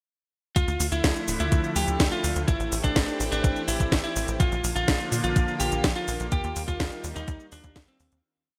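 Italo disco at 125 BPM in D minor, this short, danceable piece carries a bittersweet mood over a straight four-on-the-floor pulse, moving through Dmadd9, Am7, Bb and Ebadd9 chords. An overdriven, thumpy electronic kick drives the beat alongside a layered house drum kit with a cracking snare, metallic hats and cabasa, sitting up front with a tape-warm character. A tight, punchy sequencer bass runs sixteenth-note lines with a filter pluck and fast attack, while a thick, detuned unison pad holds sustained chords with slow attack, colored by chorus and phaser. On top, a slightly broken-up, picked electric lead guitar plays a repeating riff melody with delay. The bright 1980s-style digital production is bathed in a lush hall reverb, and the piece fades out from 5.7 to 8.2 seconds.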